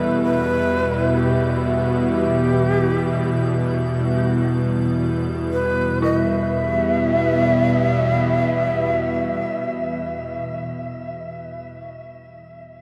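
A breathy shakuhachi carries the melody up front, its bamboo tone soft in the highs with a touch of chiff and an expressive vibrato, trailed by shimmer reverb and tape echo. This is a dark ambient drone in free time and E minor, cavernous and ominous, cut from a longer piece and resting on a single E minor chord. Beneath it, a bowed-like drone sits low and prominent, string-like and nasal with a tense edge, its own vibrato and built-in reverb. A sweeping, resonant pad holds evolving sustained chords with a filter swell and chorus, while an icy, crystalline glass pad glimmers far in the background until about 6.1 seconds. A very quiet, eerie detuned synth bell plays inharmonic arpeggios on E4 and lingers alone to 12.4 seconds, after the other parts end near 10.7 seconds, all set in a drenched cathedral reverb with a long tail.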